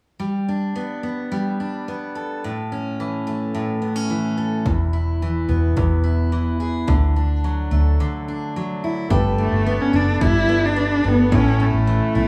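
Recorded as a band playing together in a small room, with a moderate large-studio reverb, this sunny, heartfelt acoustic pop excerpt moves at 108 BPM in a straight 4/4. A bright, full-bodied picked steel-string acoustic guitar sits up front from the start, with audible finger squeak, over chords moving through Gadd9, A, E and Dadd9. At 4.7 seconds a dark, round, foam-muted electric bass and a punchy, tape-warm electronic kick drum join. After a brief break at 8.0 seconds, a woody, smooth upright piano enters in the background, and a moment later a rich, focused bowed cello with vibrato carries the melody up front.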